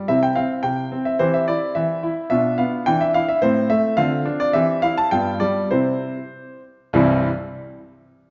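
A clear, up-front grand piano with a smooth, vintage tone and short sustain rings into a wet recital hall reverb in this elegant, cheerful classical-period sonatina fragment, cut from a longer piece. The solo piano plays from 0.0 to 7.3 seconds in C major at 96-109 BPM in a straight 2/4, spanning C2 to A5 as the harmony moves through C, Bdim, Em7, Am and Dm7 before a G7 resolves to C at 5.7 seconds. The tempo slows from 4.0 to 6.9 seconds, easing into that cadence.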